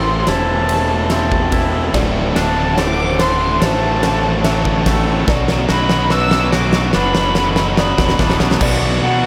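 A cinematic, euphoric post-rock build-up opens with a dark, woody violin melody carrying vibrato and analog delay from a distance, over felt-muted upright piano arpeggios with audible action noise, clean, twangy electric guitar arpeggios, a tight distorted guitar riff and a round, fuzz-drenched fingered bass up front. At 0.3 seconds a huge arena drum kit joins with a fat snare, punchy kick and sparkling cymbals in a pumping hall, playing a fill through the whole build-up, while a very quiet, lush detuned unison pad adds thick sustained chords with chorus and phaser. At 1.9 seconds a second, overdriven electric guitar riff enters in the background as the harmony moves from Am7 to D7 and Bm7 in light small-room ambience.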